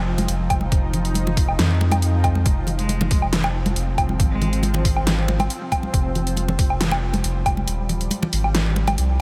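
Cavernous and dark, this deep dubstep excerpt moves at 138 BPM in a half-time 4/4 feel, centred on F minor over a single F5 chord. A blurred, evolving granular cloud pad holds sustained chords with a slow attack and long release, its built-in reverb and vintage 12-bit sampler grit giving it a mellow haze, while a round, soft sub bass sits deep and up front throughout. The overdriven dubstep kit brings a huge snare, bright hats and woodblock with a layered, small-room character, and hard-hand congas, close and dry, sit in the background with dub echo. A muffled, thumpy, pitched-down kick anchors the groove until it drops out at 7.7 seconds. Briefly, from 2.8 to 4.7 seconds, a single bowed cello holds a focused, vibrato-tinged Ab3 in the background, trailed by dub echo.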